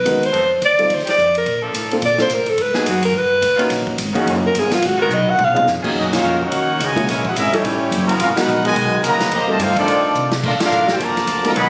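A breathy, whispered alto saxophone opens this energetic big band swing excerpt at 214 BPM, soloing with scooped notes and plate reverb over growly pizzicato upright bass, a dark baby grand piano, airy drums with dark cymbals, and sustained chords from a clear trombone section, until at 6.0 s a tight, up-front trumpet section takes the melody over a second trombone line with band accents, all in a moderate club room captured on a phone.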